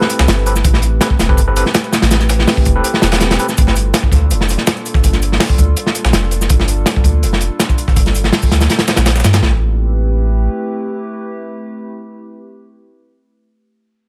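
Nostalgic and raw, this drum and bass excerpt with a jungle edge puts a crunchy, punchy acoustic breakbeat kit up front over a pitched-up sampler-style kit in the background and a deep, round dub sub bass with tube saturation, while a warbling lo-fi pad holds sustained chords with chorus and reverb until 13.1 s and an overdriven tine electric piano, played through a combo amp with fast tremolo, 12-bit grit and dub echo, stabs only in the opening 3.5 s, set in a small room as Am9 gives way to Gm9 and back.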